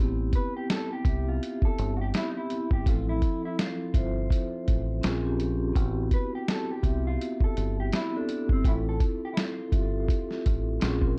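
Reflective and nostalgic, this lo-fi hip hop excerpt moves at 83 BPM in A minor with a gently swung feel, its chords drifting through Am9, G13sus4 and a brief Bbm9 under a dark production with light reverb. A soft-mallet vibraphone with slow motor vibrato and cassette-tape coloring rings out up front alongside a round, deep dub fingered bass, while a muffled, pitched-down sampler-style drum kit with a thumpy kick and medium-tuned snare enters at 0.3 seconds. At 0.4 seconds a clean, fingered electric guitar quietly carries the melody.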